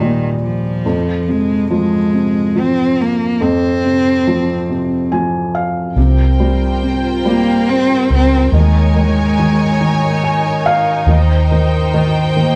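A close, intimate sound fills a moderate large studio reverb, with the players heard together in one room, in this melancholic, aching six-eight pop ballad. From the start, a single bowed cello carries the melody up front, expressive with vibrato, a soft attack and gliding portamento. Beneath it, a felt-muted upright piano gives a mellow, muted accompaniment, and it adds a fill at 4.7 seconds leading into the second section and another at 9.8 seconds. At 6.0 seconds a lush string section enters with sustained chords played sul tasto with a smooth top, joined by a dark, round, foam-muted electric bass with an amped tone. Suspended seventh chords give the second half an unresolved pull until a C minor seventh over Eb arrives at 11.1 seconds, shortly before the passage is cut off.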